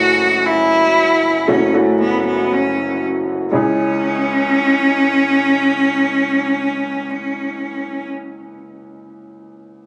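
Pop in a bittersweet yet driving vein, cut from a longer piece, where a single bowed cello, rich and nasal with vibrato, carries the melody up front over a woody, slightly detuned upright piano accompaniment as the harmony moves from F#m7 to C#m at 3.5 seconds, before the cello stops at 8.1 seconds and the piano plays alone until 9.9 seconds, all captured on a phone in the room with light reverb and compression.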